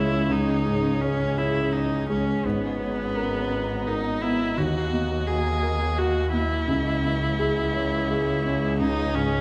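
Neoclassical piano and strings in a rubato 3/4 at 85 BPM, this short C# dorian passage feels longing and reflective as it moves through C#m, G#madd9, D#m and back to C#m. A felt-muted upright piano gives a soft, dark, intimate accompaniment, while a single bowed viola sits up front with a clear, smooth tone and vibrato, and one bowed double bass supplies a rich, focused low line. Behind them an ethereal, airy pad with ensemble chorus holds sustained chords in the background, all set in the wet, lingering reverb of a church or concert hall.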